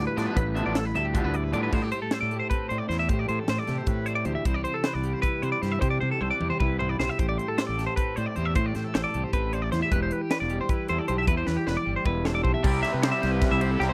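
A dry, close 1970s-style studio sound frames this wistful, restless snippet of math rock and Midwest emo in A minor, running at 308 BPM in eighths in a straight 7/8, where a warm twelve-string electric guitar plays arpeggios over a bright, twangy, up-front twelve-string electric guitar accompaniment, a dark, round fuzz bass holds the low end, a crisp, airy fusion drum kit with a high-tuned snare and punchy kick enters at 0.2 seconds and plays fills around 6.0 and 11.5 seconds, and a bright, overdriven, double-tracked garage guitar riff appears only at the opening and again from 12.6 seconds, as the chords move from G13 through Am7, Cmaj7 and Em.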